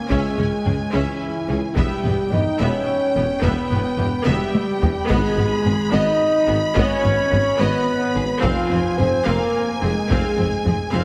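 Epic orchestral film score in 6/8, heroic yet dark, this short cut from a longer cue sets a lush, vibrato-rich violin melody high above a more distant second violin line, close viola accompaniment, and mellow French horns and trombones holding sustained chords as the harmony moves through C#m, Em, G#m and Fm. Underneath, a very quiet cello section, a background double bass section and a mellow tuba carry the bass, while a close taiko ensemble struck with hard sticks drives the pulse and plays a fill from 4.3 to 5.1 seconds, just before a very quiet timpani note sounds at 5.1 seconds. The whole is bathed in a wet concert hall reverb yet squeezed by heavy compression into a dense, radio-like sound.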